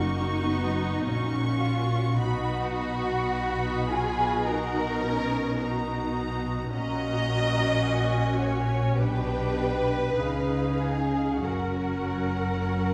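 A slow, lyrical romantic movement for string orchestra opens at once with every section sounding together at 53 BPM in F# major with a rubato feel: the violins carry a close, lush, smooth melody high above a soft-attacked, expressive second violin line, while violas supply even accompaniment and light-vibrato cellos join double basses in a warm bowed bass, the whole ensemble heard from further back in a recital hall's reverb as the harmony moves from F# through Bmaj7, F#/A#, G/B and C#9 before returning to F# at 11.4 seconds.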